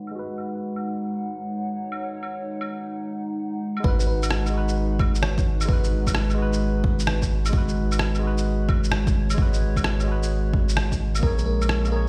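Future garage at 130 BPM in G# minor with a swung 16th feel, wistful and ghostly: a barky, lightly overdriven tine electric piano and a warbling, detuned tape-like pad with 12-bit grit both pump under sidechain over a G#m7 chord, muffled claves, shaker and rim click enter at 0.1 seconds beneath a filter sweep, then at 3.8 seconds a punchy overdriven kick, a round, up-front dub sub bass and a sparkling, bell-like FM electric piano melody with chorus, tremolo and dub echo arrive, the melody returning at 11.2 seconds as the chord moves to A#m7, all heard through the stone reverb of a bare room on a big sound system.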